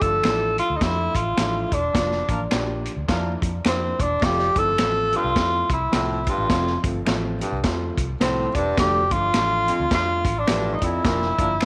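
A lightly swung 4/4 groove drives this joyful, uptempo 1960s-style soul excerpt, with a punchy kick and high-tuned snare from an up-front vintage drum kit, very quiet finger snaps, and a dark, round, foam-muted electric bass with tube saturation. An up-front tenor saxophone carries the melody with scooped notes and light vibrato over a natural baby grand piano in the background, while a distant horn section adds a brief second line around 2.3 seconds and a gritty, growling baritone saxophone riff enters at 4.2 seconds. A wet spring reverb gives the whole band a roomy vintage glow, and band accents punctuate the early bars and the final moments.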